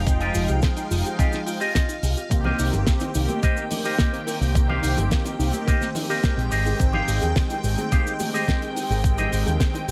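Nu-disco at 107 BPM in C minor, this short cut from a longer piece has a sensual, groovy feel over a straight 4/4 pulse, moving from Fm9 to Cm7 at 2.3 seconds and on to Abmaj7 at 6.5 seconds. A thumpy, sampler-style electronic kick sits up front beside a dry 70s drum kit with a fat snare, hi-hat and cabasa, while ringing, saturated congas and bongos enter at 2.4 seconds in the background. The picked bass runs through an envelope filter, dark and amped with sidechain pumping, as a twangy, bright guitar riff, also envelope-filtered, shimmers with lush chorus and digital delay. Mellow synth brass carries the accompaniment with detuned sawtooth tone, vibrato and a filter sweep, and a vintage string machine holds full-bodied chords in the background with ensemble chorus, 12-bit sampler grit and pumping. A soft, round pluck plays gentle arpeggios with tape echo, and a clean electric guitar fill slips in from 1.2 to 2.3 seconds, all set in a studio ambience.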